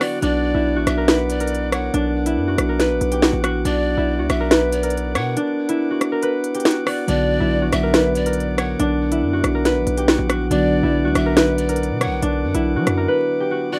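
Drill hip hop with a menacing, cold half-time feel: a ringing, fingerpicked concert harp carries the melody through a low-pass filter alongside a breathy, unsteady pan flute second line with vibrato and delay, smooth chamber organ chords with a touch of chiff, and a mellow tine electric piano that returns at 7.1 seconds, while an up-front electronic kit with a sharp snare, crisp hats and rim clicks (its kick muted between 5.4 and 7.1 seconds) plays alongside a heavy, aggressive distorted 808 bass until the drums fall away at 13.1 seconds, all in a dry, rough home-demo mix dusted with vinyl crackle.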